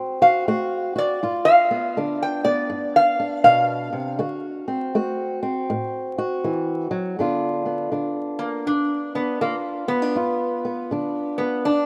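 Rollicking and gritty, this swung acoustic country blues fragment from a longer piece sets a bright, nasal metal-body resonator slide guitar, played up front with a steel bar and fingerpicks, over a dark, woody, boxy ladder-braced acoustic guitar on old strings that fingerpicks the accompaniment. The resonator carries a slide solo through the first 7.2 seconds as the changes move between D7 and G7. A lush hall reverb and vinyl crackle give the rough home-demo sound a worn, roomy character.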